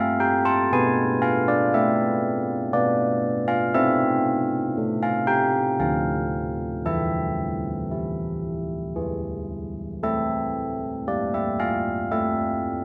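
A solo carillon opens this wintry, solemn classical bell tune in A minor, moving at a stately 58 BPM in 3/4 and spanning D3 to A5. The bronze bells sound mellow and up front, their minor-third overtone ringing through a padded clapper's soft strike, caught by close, detailed microphones with light reverb. The harmony passes from A through E and Am/C to Dm around 5.8 seconds, then returns through E to A by 10.0 seconds in this short fragment of a longer piece, tuned to A4 = 441 Hz.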